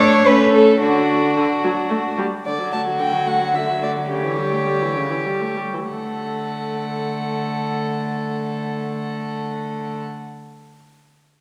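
In a straight 3/4 between 92 and 113 BPM, this spirited, cheerful classical-period movement for string quartet in D major, tuned to A4 = 439 Hz, is cut from a longer piece and eases into a slowdown from 1.6 to 5.9 seconds before settling on D. One dark, nasal gut-string violin carries the melody while a second violin plays a supporting line, the viola adds rich accompaniment with light vibrato, and the cello gives a reedy bass. All four are bowed in period style, and the quartet is heard from further back in a wet recital hall.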